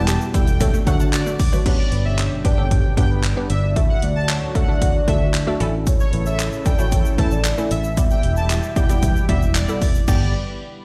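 A summery, euphoric dance-pop excerpt opens on a drop, with a smooth supersaw melody carrying tape echo over a crystalline wavetable pluck, a thick, warbling unison pad and a round fingered electric bass, all pumping against the punchy, up-front deep house kit of kick, hi-hat, handclaps and crash cymbal. A background unison pluck adds brief vintage-toned arpeggios and a grainy egg shaker ticks along, the shaker dropping out and returning at 5.9 seconds. At 1.7 seconds a dark, full octave-layered synth lead with chorus, tremolo and echo joins the melody, all set in a bare stone room's reverb.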